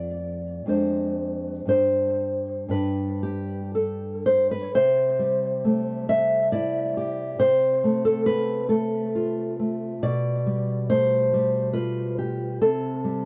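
In a loose, rubato three-four lilt, this short excerpt from a longer romantic piece for solo classical guitar feels sunny and nostalgic. The nylon-string guitar sits up front, its fresh strings thumb-plucked with a dark tone, the odd finger squeak and a touch of tape echo, moving from F through G into a second passage that settles on C by 12.6 seconds. Light reverb and a dark, warm production frame the single instrument.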